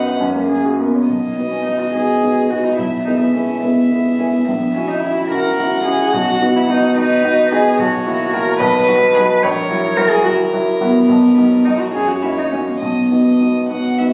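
A dark, intimate cello sits up front with a smooth top and light vibrato, playing a bowed second line sul tasto with a soft attack, while a rich, pure violin carries the floating melody above it with an airy bow, and a warm, polished baby grand piano supplies present accompaniment. This graceful, lively classical-period piano trio movement moves at 72 BPM in dotted quarters in 6/8, with uneven beats and rubato, and is cut from a longer piece. It sits in B major, leaning on B and F#7 harmonies, and the sound is wet with recital hall reverb, captured on a phone in the room with added club reverb and compression; the cello falls away at 13.7 s while violin and piano carry on to 14.1 s.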